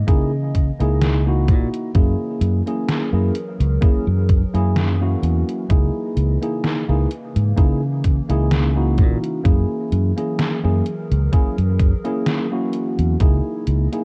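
A thumpy, up-front electronic kick and a detuned 8-bit drum machine's hi-hat and medium-tuned snare, both re-recorded in a small room, set a lightly swung 16th-note groove at a slow 64 BPM in 4/4 for this hazy, woozy vaporwave fragment in C# dorian. A round, direct fingered electric bass sits up front while a clean tine electric piano, played through a combo amp with lush chorus and analog delay, moves between C#m69 and F#9 chords. In the background, a warbling, nostalgic lo-fi pad of detuned square, triangle and sawtooth tones fades in with a slow attack and lingers with a long release under chorus, reverb and phaser, and the mix carries an echo-heavy cassette-tape ambience.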